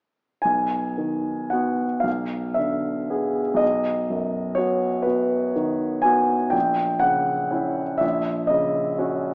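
Dreamy and tender, this brief fragment of a romantic classical nocturne for solo piano drifts in a rubato 6/8 at around 37-41 dotted-quarter beats per minute in B major, its intimate, up-front concert grand revealing audible action noise and deep bass as it moves from B through E7b9/B and A#dim to F#/A#, all bathed in a recital hall's reverb and softened by the warbling pitch drift and small-speaker sound of a worn old cassette tape.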